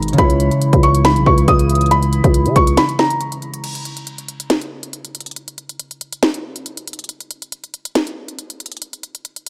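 Lightly reverberant and up-front, this menacing, brooding half-time trap fragment opens with a soft, felt-muted upright piano melody, low-pass filtered and delayed, over mellow, ringing thumb-plucked concert harp, a deep, detuned analog pad in the background, and a growling, buzzy 808-style bass. The bass drops out at 2.8 seconds, and the piano, harp and pad fall away between 3.6 and 3.7 seconds. From there the electronic trap kit, with its hard-clipped kick, sharp snare, crisp hats and crash, carries on alone under a filter sweep until 9.5 seconds.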